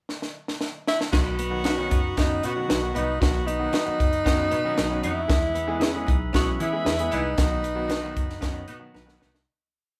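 A breathy tenor saxophone sits up front, singing a free, jazz-style melody with vibrato and scooped notes over an uptempo 1960s-style soul groove in B major at 115 BPM. The piece opens with a drum fill on a compact cocktail kit, dry and punchy with dark cymbals and a high-tuned snare, which then drives a danceable beat with the snare on all four beats. From about 1.1 seconds a round, foam-muted vintage electric bass carries a melodic, syncopated line with chromatic approach notes, while a clear grand piano adds rhythmic chords and a fat, lightly overdriven tonewheel organ holds a percussive sustained pad. Two guitars sit back in the mix: a hollow-body archtop repeats a clean picked figure, and a mellow electric guitar drops short chops on the backbeat. A distant, roomy horn section enters around 2.2 seconds with short ensemble stabs, and the band, heard together in one room with light reverb, moves from B to E and back before fading out from 7.4 seconds under a closing drum fill.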